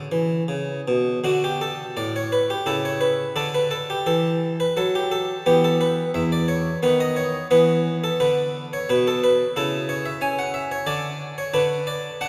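Classical baroque-style suite movement for solo harpsichord in D major, a radiant, dance-like passage in 3/4 that moves with rubato at roughly 78-93 BPM, cut from a longer piece. The single harpsichord sits up front with an airy, plucked, round tone from one set of strings, ranging from E2 to G#5 through chords such as D5, C#m7, B/D# and C#madd11. A wet church reverb with a 3.6 s decay surrounds the instrument and carries it into a closing unharmonized moment at 10.9 seconds.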